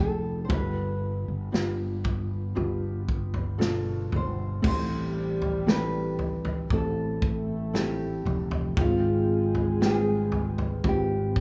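A slow, straight 4/4 pulse at 58 BPM from a punchy, up-front country drum kit, entering at 0.5 s, and a growly sustaining fretless electric bass carries this tender, hopeful pop ballad, where a thumb-plucked nylon-string guitar with fresh strings sings the melody over a mellow felt-muted upright piano with audible action noise, and from 4.6 s a dark, distant French horn section with light vibrato and digital delay adds a second line as the harmony moves from Cmaj7 and G7 to Am7, set in a small room ambience.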